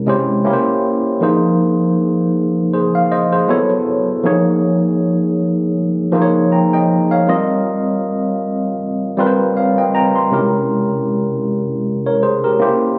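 R&B at an unhurried 79 BPM with a lightly swung sixteenth-note feel, this sultry, introspective fragment of a longer piece features a lone tine electric piano, worn and slightly out of tune. It sits up front with a lightly overdriven edge, heard through built-in speakers, as it moves through rich chords like C7b9, Fm7, Bbm9 and Eb69, settling on C7b9b13 at 10.3 seconds. Captured on a phone in the room, the sound carries a club's reverb and compression, lending an intimate, late-night feel.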